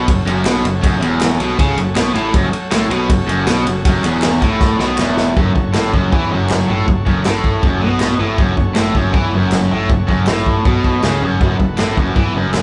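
A bright, double-tracked overdriven guitar riff sits up front in this gritty, raw garage rock clip, cut from a longer piece and played with a straight four-beat feel. Just as prominent, a vintage acoustic drum kit drives it with a punchy kick, medium-tuned snare, toms and a dark ride cymbal. Farther back, a fingered electric bass growls with fuzz, and a reedy combo organ holds clean sustained chords with light vibrato. A very quiet group handclap adds crisp, dry accents. The drums play a fill from 4.6 s that leads into a new section at 5.4 s, and the organ adds a short fill of its own at 7.2 s. The band sounds as if it is playing live together in one room, with light reverb and a capped high end.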